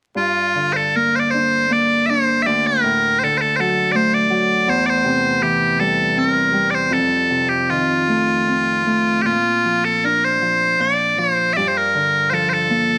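A home cassette recording with vinyl crackle and a moderate studio reverb frames this short Celtic slow air in 3/4, which moves with uneven, rubato beats and a longing, haunting mood. Loud, piercing bagpipes carry the melody up front from 0.2 seconds, their continuous tone treated with plate reverb and cassette grit. Beneath them, a thumb-plucked Celtic harp rings out in a warm, acoustic low register, accompanying through a chord progression that begins on Gm and settles on Gm7 near the close at 13.0 seconds.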